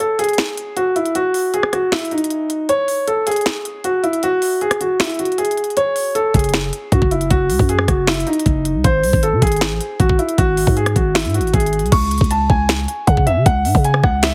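A dark, boxy concert grand piano carries an eerie melody with tape echo over a trap drum kit of knocking kick, sharp snare, crisp hats, finger snaps, rim clicks and crash in this hard-hitting half-time trap excerpt at 156 BPM in C# harmonic minor, where the kick drops out briefly at 5.8 seconds before a growling, buzzy 808-style bass enters at 6.3 seconds, all in a dry, heavily compressed radio-style mix.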